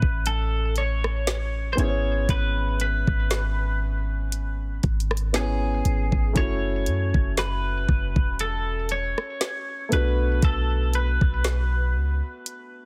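Moody and late-night, this contemporary R&B excerpt moves at a slow 59 BPM in F# minor with a light sixteenth-note swing, as a bright, twangy twelve-string electric guitar carries the melody through delay over a grand piano with short sustain voicing Amaj7, C#m7/G#, F#m7 and Bm7. Underneath, a deep, boomy sine-toned 808-style bass and a produced electronic drum kit with a knocking kick, woody snare, rim click and warm hi-hats sit up front. The dry mix has a heavily compressed radio sound, and the piano closes with a brief fill at 12.5 seconds.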